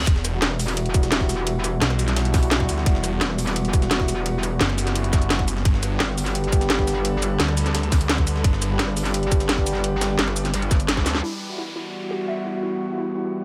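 A straight, driving drum and bass groove, built from a tight electronic kick, an up-front kit with a cracking snare and cabasa, and a very quiet, gritty breakbeat layer, powers this aggressive, futuristic drop of dark technical drum and bass, where a growling, detuned saw bass and a bright, chorused wobble bass snarl beneath eerie, warbling inharmonic drone chords and mellow, filtered brass stabs, until a drum fill at 11.0 seconds and a downlifter at 11.2 seconds clear the low end for a lo-fi, warbly dusty pluck arpeggio in the background.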